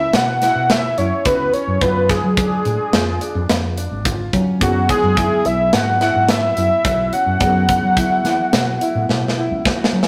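Tense and intricate, this short cut from a longer progressive instrumental moves in an uneven 5/4 with a straight feel, set in a stone room whose wet reverb and rough rehearsal-room sound give it a raw edge. Up front, a fat analog lead carries the melody from the start, its detuned sawtooth tone backed by a sub octave, with a fast attack, sustained notes and vibrato. Beneath it, a qanun plucked with fingerpicks plays bright-edged arpeggios on its triple strings, while a woody fretless electric bass, dark, growly and round, anchors the low end with an amped, hollow-body punch. A tight metal drum kit, mid-forward with a medium-tuned snare and a rolled-off top, drives the hi-hat, kick and snare and closes with a fill at 9.1 seconds. At 4.6 seconds a mellow, clean tine electric piano slips in behind the others, adding quiet accompaniment as the chords shift through E69 and F#9sus4.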